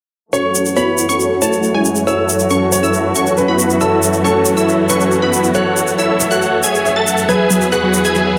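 Emotional and soaring, this uplifting trance passage at 138 BPM in F# minor, cut from a longer piece, is led by huge, detuned supersaw chords sitting up front under a filter sweep, with a mellow felt-muted upright piano carrying dub echo, a punchy plucky unison lead treated with phaser and dub echo, and a woody, bowed studio string section holding sustained chords beneath its own filter sweep. A grainy tube shaker keeps close, dry time throughout, while a detuned unison pluck joins with arpeggios at 7.3 s as the harmony moves from F#m7 to E. A lush hall reverb surrounds the parts.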